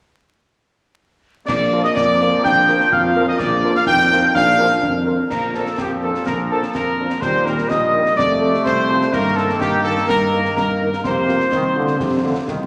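A clear trumpet section leads this proud, spirited military-style march for wind band, playing the melody up front with light vibrato in Bb major at 126 BPM in a straight 2/4, cut from a longer piece. Behind it, an airy, hollow piccolo adds a tongued second line, a dark euphonium joins until 4.9 s, a bright trombone section holds tight sustained chords, and a mellow, distant tuba carries the bass. A tight French horn section supplies background accompaniment from 1.7 s while close, dry concert snare drum, dark clash cymbals and concert bass drum keep time; the harmony moves from Bb through Eb, F, Eb/G and Fsus4 to F, all set in a wet scoring-stage reverb with a layer of vinyl crackle.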